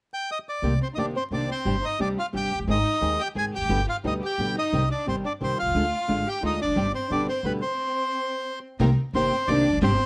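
Tango in a rubato 3/4, dramatic and melancholic, cut from a longer piece: a reedy bandoneon sits up front with the melody while a dark, fingerpicked flamenco guitar and a woody, thumpy pizzicato upright bass carry the accompaniment and low end, and a lush bowed violin section adds a smooth second line. The band breaks off at 7.8 seconds and returns at 8.8 seconds, when a very quiet, focused string section enters with brief stabs. Close, detailed microphones and light reverb give a present sound, dusted with vinyl crackle.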